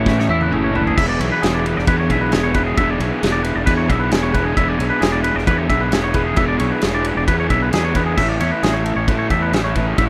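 An up-front, double-tracked raw garage guitar plays an overdriven, lo-fi riff through this bright, intricate math rock and midwest emo excerpt at 133 BPM, alongside a growly fuzz bass, a roomy loose indie drum kit with a punchy kick that opens with a fill, clean twangy arpeggios under digital delay, and a compressed twelve-string electric guitar sitting in the background with spring reverb until 2.8 s, while the chords move from Amaj9 to E7 and back to Amaj9 at 8.2 s in a rough home demo mix.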